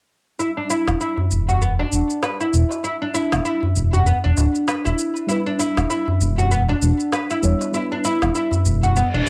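Meditative and warm, this organic downtempo fragment moves at 98 BPM in 4/4 with a lightly swung sixteenth-note feel, resting on an E minor seventh chord. Up front, a plucked, fretless oud with doubled strings plays woody arpeggios, its tone softened by a low-pass filter and colored by cassette tape and tape echo. A deep, clay-shelled darbuka with natural skin sits in the background, compressed and saturated, beside an electronic shaker and a woody produced snare. From 0.9 seconds, a smooth, mellow synth bass blending sawtooth, square and triangle waves with ring modulation holds the low end with sustained notes shaped by a filter sweep. At 5.3 seconds, a dark, warbling vintage chord stab enters, detuned and decaying, thickened with chorus and tape echo, and an electronic reverse cymbal appears at 9.1 seconds as the passage cuts off, all set in a modest studio ambience with a home cassette character.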